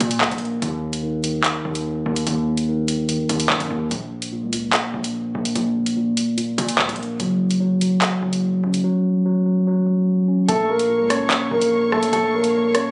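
The rhythm is a half-time drill groove at 146 BPM in 4/4, driven by an electronic drum kit of metallic hi-hats, handclaps and rim clicks that sits up front with a tape-warm edge. Underneath, a heavy distorted 808-style bass with a noise layer and fast, decaying attack grinds low, giving this dark, ominous hip hop cut in Bb harmonic minor its aggressive weight. A mellow, clean tine electric piano plays the accompaniment from the start through a low-pass filter, moving over Bbm, Eb5 and Gb5 with a chordless stretch at 3.9 seconds. At 10.5 seconds the music shifts to a new section as a dark baby grand piano takes the melody with long sustain and tape echo, while a distant, woody symphonic string section adds lush bowed chords with vibrato high above. The sound has a small-room, phone-captured character with light reverb and a dulled top end, and the clip is cut from a longer piece.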